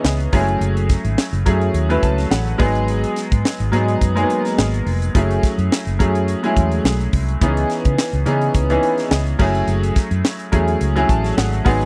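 Nocturnal and bittersweet, this polished 1980s jazz-funk pop cut moves at 106 BPM in 4/4 with a light sixteenth-note swing, set in F# dorian. A clear baby grand piano carries the accompaniment up front, its intimate tone touched by analog chorus and audible action noise, and it slips in fills at 1.7 and 10.8 seconds. Beneath it, a vintage muted fingered electric bass gives a dark, round, foam-muted, amped line. A tight funk drum kit sits close with bright cymbals, a high-tuned snare, a tight kick, hi-hat and crash. The chords circle through F#m9, G#m7 and C#m9 before returning to F#m9, all captured in a dry, close 1970s-style studio sound with little reverb, and the passage is cut from a longer piece.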